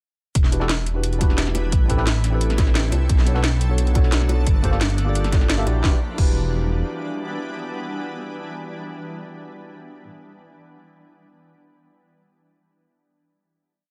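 Rolling two-step drums with a punchy electronic kick, cracking snare and metallic hats drive this melancholic, dreamy liquid drum and bass piece, where a deep, detuned sawtooth bass sits up front with long gliding notes, light bongos murmur in the background, a clean tine electric piano adds syncopated chord stabs through delay, and an ethereal pad with octave-up shimmer and chorus holds sustained chords until the drums drop away at 6.3 seconds, leaving a final chord from 5.8 seconds and the piano ringing alone to 10.1 seconds.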